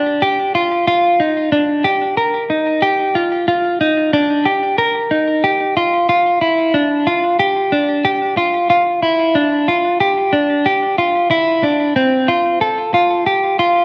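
Dream pop at 92 BPM in a straight 4/4, this short cut from a longer piece has a floating, ethereal mood carried entirely by a solo semi-hollow electric guitar. The guitar plays alone for the full 13.8 seconds, moving between C4 and Bb4 with a clean, picked, hollow-bodied tone that sits up front in the mix. Subtle chorus and delay on the guitar add shimmer, while compression keeps its notes even. The whole recording sits in a wet reverb with a long 1.6-second tail, giving the single instrument a sense of large space. A worn cassette-tape character, with warbly pitch drift and a dulled top end, lends the sound a hazy, nostalgic quality, and the tuning sits slightly below standard pitch.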